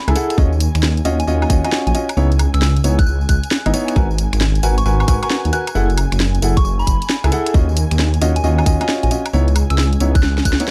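An ethereal, airy pad opens this skippy, bouncy two-step garage cut at 134 BPM, sitting mellow in the background with ensemble chorus, tremolo, built-in reverb and sidechain pumping, as a smooth vintage grand piano plays stabs over minor-ninth chords moving from D#m9 through C#m9, G#m9 and F#m9. A deep, rumbling detuned saw bass and a tight, overdriven electronic kick sit up front, joined by a garage kit of cracking snare, hi-hat, finger snaps, tambourine and woodblock that closes with a drum fill at 10.2 seconds. From 1.2 seconds a soft, pure FM bell melody enters, coloured with chorus, phaser and dub echo, all within a dark, dry production.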